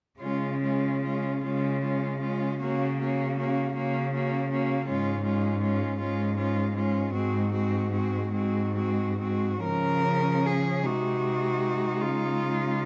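In a rubato 6/8 lilt at about 44-55 BPM in dotted quarters, this tender, lyrical classical passage for cello ensemble, cut from a longer piece, unfolds in D-flat major. Three rich, bowed cellos with vibrato carry a close, up-front melody, a smooth second line and a focused accompaniment, while a clear, bowed cello with vibrato holds the bass beneath them throughout. Light reverb and a dark production frame the playing, and a new section begins at 9.6 seconds.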